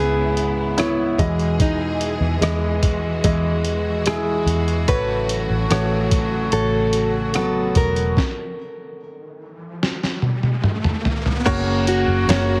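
Hopeful and tender, this pop ballad excerpt moves at 73 BPM in a straight 4/4, with a fingerpicked nylon-string guitar carrying the melody through a digital delay, complete with finger squeak and fresh-string sparkle, over an intimate grand piano whose action noise sits up front, lush bowed strings holding sustained chords, and a dark, foam-muted fingered bass. A muffled, tape-colored sampler-style drum kit with a thumpy kick enters at 0.4 seconds, and after the harmony drops out at 8.2 seconds, an electronic riser and a drum fill build from 9.6 and 9.8 seconds to land on a new chord at 11.5 seconds. The whole mix carries light reverb and digital ambience under a heavily compressed, radio-style sound.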